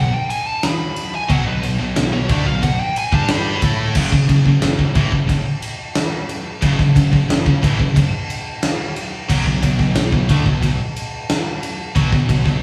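A big, punchy rock drum kit with a fat snare sits up front, entering at 0.3 seconds to drive this relentless, aggressive heavy metal excerpt at 90 BPM in F# minor, as a dark high-gain lead guitar plays a brief solo melody until 3.8 seconds over three bright distorted rhythm guitars, one of them double-tracked, playing riffs through B5 and F#m chords alongside a growling overdriven picked bass, all in a moderate room reverb that sounds like a band playing live together.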